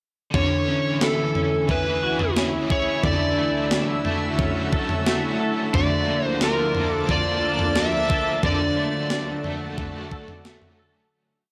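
Dream pop at 89 BPM in D lydian, floating and dreamy, with a gated 80s digital drum machine up front carrying a slow tom and kick pulse, its thumpy kick and gated-reverb snare overdriven and re-recorded in a small room. A clean electric guitar fingerpicks a rolling arpeggio pattern through ensemble chorus and tape echo. Behind it, a bright, double-tracked cranked stack guitar strums open chord shapes slowly with overdrive, tremolo and analog chorus, and a shimmering, ethereal ambient pad holds sustained, detuned chords from 0.9 seconds. Up front, an overdriven slide guitar plays a motif-based melody of call phrases, and the whole piece, with its gritty, transformer-saturated sound, fades out from 8.4 to 11.1 seconds.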